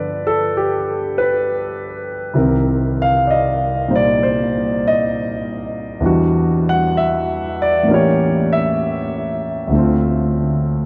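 Wistful and melancholic, this brief jazz ballad excerpt unfolds at a slow, gently swung pace in 4/4, with a dark concert grand piano playing alone from start to finish over roughly 10.9 seconds. The piano sits up front with a mellow, natural tone and deep bass, moving through G7, Cm7, Em9, A7b9 and Dm7. It rings out in a vast, echoing cathedral space whose long, wet reverb dulls the highest frequencies.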